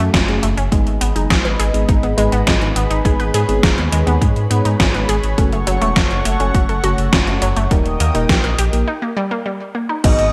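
A dark, detuned saw bass sits up front in this nostalgic, driving synthwave excerpt, its deep, rumbling tone thickened by tube saturation and sidechain pumping. The tempo is 103 BPM in a straight 4/4, in G# phrygian, with chords moving from F#m to G#m, back to F#m and on to D#. An overdriven, punchy electronic kick pairs with a gated 1980s digital drum machine whose crash, hi-hat and snare ring with gated reverb. A bright unison pluck spins delayed arpeggios, and a round FM electric piano adds chorused, delayed stabs. A shimmering pulse-width pad enters at 0.7 s with slow-blooming sustained chords that also pump. After a break at 8.9 s, a velvety synth lead with vibrato arrives at 10.0 s, all within a bright, 1980s-style digital production with light reverb.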